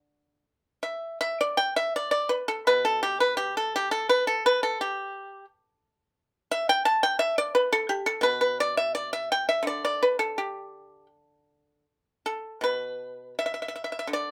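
A small room's modest ambience frames this serene, pastoral excerpt of traditional Chinese music, in which a solo pipa, played with fingerpicks and sounding dry, percussive and up front, ranges from B2 to A5 at a loose, rubato 76-89 BPM in 4/4 for its full 14.3 seconds.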